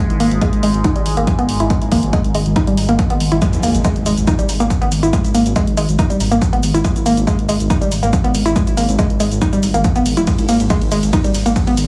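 A woody, wave-folded pluck sits up front in this hypnotic, industrial stretch of driving peak-time techno at 140 BPM in G# harmonic minor, cut from a longer piece. Its percussive riff carries a noise layer and ring-modulated edge, with a filter sweep, chorus, tube saturation, tape echo and sidechain pumping. A resonant, evolving drone with moving overtones and built-in reverb glows beneath it before stopping at 3.5 seconds. A dark, detuned saw bass rumbles and beats in the depths, pumping to the sidechain, while a layered, punchy electronic kick arrives at 0.4 seconds. A dry analog drum machine adds hi-hat, ride cymbal and shaker, and a very quiet electronic impact marks the drop at 3.4 seconds. The mix is close and heavily compressed in a radio-like way, with small room ambience and little reverb.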